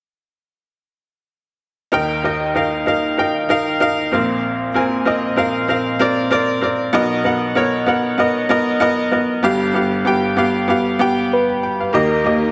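A moderate, large studio reverb with a touch of small-room ambience frames this short cut from a longer anthemic, warm pop piece in Eb major, tuned to A4 = 436 Hz and moving at 96 BPM in 4/4 with a light 16th-note swing. A bright, woody upright piano enters at 1.9 seconds and sits up front, its worn, slightly detuned tone carrying the accompaniment through Eb, Bbsus2, Bmaj7 and G7 before returning to Eb. At 11.3 seconds a soft, round FM synth lead adds a gentle, keys-like melody with a fast attack and decaying notes, shaded by chorus, phaser, digital delay and vibrato. From 11.9 seconds a dark, lush string section joins in the background, its bowed ensemble chords smooth on top and touched with vibrato. The piano's brilliant presence dominates the mix, while the synth and strings arrive only in the final moments.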